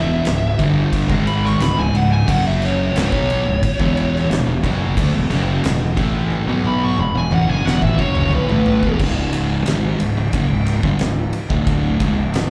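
A fuzz-drenched lead guitar carries a dark, compressed solo over the opening 9.0 seconds, its distorted line set high above the band and trailed by slapback and tape echo. This brooding, sludgy stretch of stoner and doom metal, cut from a longer piece, moves at a steady straight 4/4, with two picked fuzz guitars grinding out a riff in the background: one murky and squeezed, the other warmer and carrying slapback echo. A fingered electric bass adds a bright, growly overdriven edge beneath them. The oversized, low-tuned drum kit arrives at 0.2 seconds with a boomy kick, fat snare, dark cymbals and a pumping, saturated room sound pushed up front, and a fill from 6.3 to 9.0 seconds leads into the next section. There the solo and the echoed rhythm guitar drop away, leaving the other fuzz guitar, bass and drums to pound on in a live club setting heard through the venue's PA.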